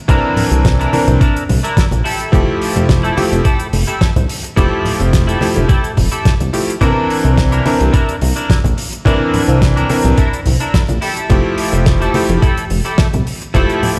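A straight 4/4 pulse at 107 BPM drives this sunny, feel-good nu-disco cut in F major, where a thumpy, tape-toned electronic kick and a glossy, up-front synth bass with sidechain pumping anchor a dry, fat-snared 70s kit with hi-hat, soft-handed congas in the background, a twangy clean guitar riff with analog chorus and dub echo, and a clangy, cutting electric grand piano with dub echo accompanying over C9 and Fmaj9 chords, all set in a large studio reverb like a big sound system in a bare room.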